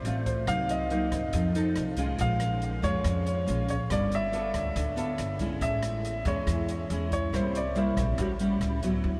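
Sunny and relaxed, this short bossa nova excerpt drifts along in a straight four, bathed in a huge, dreamy reverb that soaks the whole mix. An intimate concert grand piano carries the melody up front in a narrow upper range, its action noise audible, its long sustain trailed by tape echo. Beside it, a fingerpicked nylon-string guitar in a classical style supplies the accompaniment, also up front, with an ensemble chorus colouring its warm tone. An open jazz kit with a dark, smooth character, a boomy kick, a rolled-off top and rim clicks sits low in the blend, joined by a woody pizzicato upright bass strung with steel, which enters at 0.1 seconds. The harmony moves through rich jazz chords such as Cm7b5, G9 and Amaj7 before settling on A13 at 8.2 seconds.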